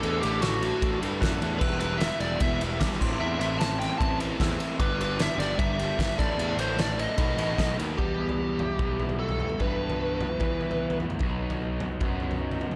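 Echo-heavy and set in a small room with light reverb, this moody, cool indie rock excerpt moves at 150 BPM in a straight 4/4. A loose acoustic drum kit sits up front with a punchy kick, fat snare, dark cymbals and a pumping room sound, also bringing in crash, ride and toms, while a fuzz-laden picked bass growls beneath in bright, overdriven tones. Two overdriven electric guitars play riffs in the background: one crunchy, with subtle chorus and analog delay, the other raw and lo-fi. A biting, bright lead guitar carries the melody through overdrive and analog delay, and a mellow glockenspiel struck with rubber mallets adds a soft, bell-like second line until 8.0 seconds. At that point the harmony settles into E harmonic minor, moving from Emadd9 toward B, and the lead guitar drops out at 11.0 seconds, leaving the riffs, bass and drums to close the passage.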